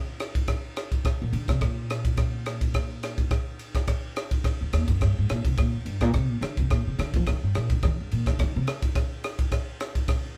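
Slick and nocturnal, this short cut from a longer electric jazz fusion piece sits in C minor at 106 BPM in 4/4, with a light sixteenth-note swing and tuning at A4 = 441 Hz. A crisp, punchy fusion drum kit with a gritty, saturated edge and a pumping small-room sound starts at 0.2 seconds, marking time with kick, ride cymbal and rim click. The upright bass takes the solo from 1.2 to 8.6 seconds, plucked pizzicato on steel strings with a woody tone, both parts up front in a light reverb that gives the feel of a band playing live in one room.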